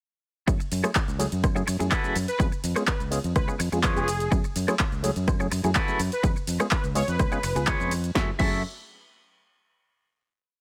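At 125 BPM in F# minor, a full groove kicks in at 0.5 seconds: an overdriven, punchy four-on-the-floor electronic kick sits up front beside a punchy, overdriven analog drum machine of snare, clap, hats, shaker, ride, rim and crash, while a growly, overdriven fingered bass plays a funky syncopated line and a barky, reedy electric piano with fast tremolo, phaser and 12-bit sampler grit pumps out dotted-rhythm rootless chords. A clean, scooped electric guitar picks a close-voiced funk chord rhythm over the F#m7 to C#7 changes, and from 2.3 seconds a fat, detuned sawtooth synth brass with filter sweeps, chorus, vibrato and delay adds short answering phrases. This groovy, sensual filtered disco house piece has a pumping sidechain feel across most parts and closes on a final F#m7 chord at 8.2 seconds, set in digital ambience.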